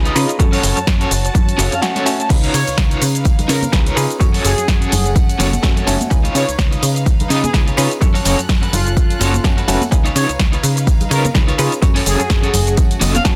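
A dense, heavily limited modern master in a digital ambience carries this joyful, sunny slice of filtered disco house, cut from a longer piece and riding a swung sixteenth-note feel. An analog drum machine's crash, hi-hat, shaker and snare, re-recorded in a small room, sets the groove in motion from 0.1 seconds, and an up-front, punchy electronic kick anchors it from 0.4 seconds, while ringing, close tambourine and congas sit very quietly underneath from 2.3 seconds. A plucky sawtooth and pulse-wave bass with a funky filter pluck and moving notch drives the low end, and a percussive, stringy muted clav, overdriven and phased, fills out the accompaniment. An electric guitar at the edge of break-up picks a riff through tremolo, with clean guitar fills, while a bowed studio violin section holds sustained chords in the background with light vibrato and an intimate sul tasto tone. From 2.5 seconds a bold, fat analog synth brass takes the melody, wave-folded and ring-modulated with a filter sweep, chorus and digital delay. 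Sidechain pumping breathes through the clav, violins, guitar, bass, synth brass and the drum machine's hats, percussion and cymbals, as the harmony alternates between Gbm and Db9.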